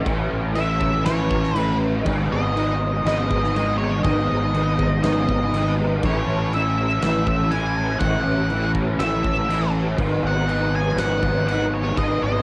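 Shoegaze and dream pop rock with a dreamy, hazy mood, cut from a longer piece and built on a raw garage guitar riff that is dark, double-tracked and up front, thickened with overdrive, ensemble chorus and cassette tape grit over a growling fingered bass that sounds bright and overdriven. A huge arena drum kit with a fat snare, punchy kick and crash cymbal carries a big-room sound through cassette saturation, while from 0.6 seconds an octave-fuzz lead guitar traces a high melody through distortion and tape echo. The chords move between A and G#m, settling on G#m7 at 10.0 seconds, all captured as a home cassette recording with light reverb and small room ambience.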